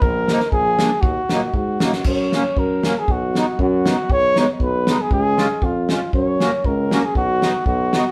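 Moderate room reverb surrounds an alpine folk dance band playing live together in this festive, jolly 2/4 snippet with a gentle swing, where a dark, soft-attacked trumpet carries the melody up front with light vibrato, a clear, vintage-toned tuba holds the bass, a loose acoustic drum kit with a fat snare, tight kick, crash cymbal and rolled-off top sits forward, and a reedy, sweet, close-miked accordion with light tremolo tuning joins at 0.3 s.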